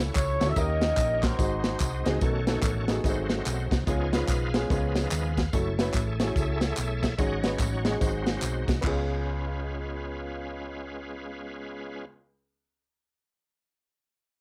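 A cassette home recording with light reverb catches a soulful, fervent uptempo gospel fragment at 145 BPM with a swung feel, where a mellow horn section states the melody until 2.1 seconds before a bright, shouting tonewheel organ with slow rotary speaker, overdrive and chorus vibrato takes a solo from 2.2 to 8.8 seconds, over a round, punchy hollow-body electric bass, a dry, tight funk drum kit, tambourine and group handclaps that stop near 9 seconds, and a woody, slightly detuned upright piano entering at 0.4 seconds.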